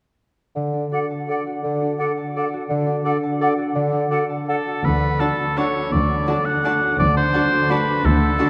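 A 3/4 waltz at 168 BPM moves with uneven beats and rubato. This festive, sweeping orchestral ballroom piece in D major is cut from a longer piece. A fingerpicked concert harp rings out arpeggios from the start, while a solo bassoon with light vibrato holds a low accompaniment in the background. A bright, punchy oboe carries a second line up front, joined by an airy, crisp small flute group and a warm clarinet set further back. From 4.8 seconds, muted, bowed cello and double bass sections take up the bass line, and from 5.2 seconds muted violin sections add a soft-attacked melody high up and a second line beneath, with a distant viola section filling the accompaniment. These con sordino strings sit veiled and lush behind the oboe and harp, and the whole is bathed in a cathedral reverb with a long tail in a dark production.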